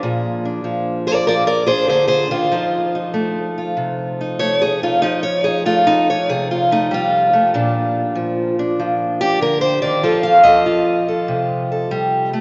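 Rollicking yet soulful, this short cut from a longer acoustic country blues piece swings along at 96 BPM in 4/4 with a loping shuffle feel, in Bb major and tuned slightly flat to A4 = 438 Hz. A single fingerpicked steel-string acoustic guitar carries the whole 12.4 seconds alone, sitting up front and ranging from Bb2 up to F5. Its parlour-sized body gives a boxy, warm tone, while fresh strings add snap and the occasional finger squeak slips through. The harmony moves from Bb7 to F7, settles briefly on Bb, then turns back to F7 near the close. The guitar is bathed in a long, cathedral-like reverb that hangs for about 4.5 seconds, and the recording's dark, rolled-off top end places it in a large church or concert hall.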